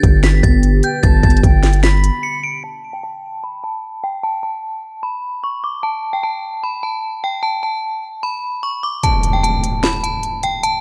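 A half-time trap groove at 150 BPM opens this wistful yet triumphant hip hop clip in G, with crisp hats, a sharp snare, a hard-clipped kick and a heavy, distorted 808-style bass up front beneath a ringing, inharmonic FM bell melody and a deep, moody pad with chorus and phaser, joined at 0.8 seconds by a distant, airy flute line with vibrato and digital delay. The beat and bass drop out at 2.1 seconds for a short break, and the pad and flute fade away at 2.6 seconds, leaving the vintage, warbling bell alone under a filter sweep. At 9.0 seconds the drums return with the kick muted, and an up-front electronic impact hits, all set in a dark, warm digital ambience.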